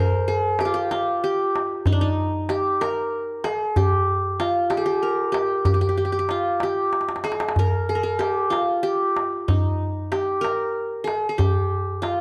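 A bright-edged, plectrum-plucked qanun with triple strings opens this longing, hypnotic excerpt of Arabic maqam ensemble music in G maqam bayati, tuned to A4 = 438 Hz, at 63 BPM in a straight 6/8, joined at 0.6 s by a deep, saturated clay-shell darbuka that plays a fill at 6.9 s, both placed up front with close, detailed microphones in a moderate recital hall reverb.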